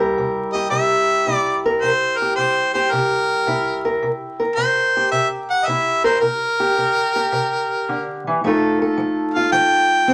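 Vinyl crackle and moderate studio reverb frame this swaggering, laid-back acoustic country blues at 109 BPM with a swung 4/4 feel in C mixolydian, where a boxy, up-front fingerpicked parlour steel-string guitar opens on C7 and a bright, close-miked harmonica joins at 0.5 seconds with a jazz-styled solo of scooped notes and light vibrato before the harmony moves to F7 at 8.4 seconds.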